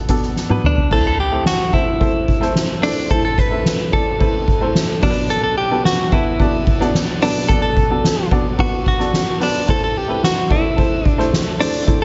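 Dramatic and driving, this piano-driven pop excerpt moves at 110 BPM in a straight 4/4, cut from a longer piece. A clear, woody upright piano with a slightly detuned character and short sustain supplies the accompaniment from the start, ranging from A2 to E5 and touched with slapback echo. A soft-mallet drum kit sits up front, pairing dark cymbals with a fat snare and boomy kick, and a drum fill from 0.4 to 0.9 seconds leads into the main section. At 0.7 seconds a direct-recorded clean electric guitar takes the melody between D4 and B4, its picked, compressed tone also carrying slapback echo. The harmony moves between Bm7 and Am, while light reverb and a small room ambience give the whole a snug, rounded sound.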